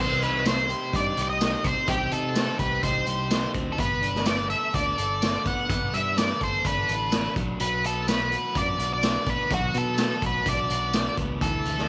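Carefree and upbeat, this short indie rock excerpt at 126 BPM in a straight 4/4 sets a dark, fuzzy octave-fuzz lead guitar melody with distortion and tape echo up front over a compressed, overdriven rhythm guitar riff, a bright, growly picked bass and a gritty, saturated small-room garage drum kit of punchy kick, medium-tuned snare, hi-hat and tambourine entering at 0.2 seconds, all moving through Cm, Gadd9 and Bm in a studio reverb.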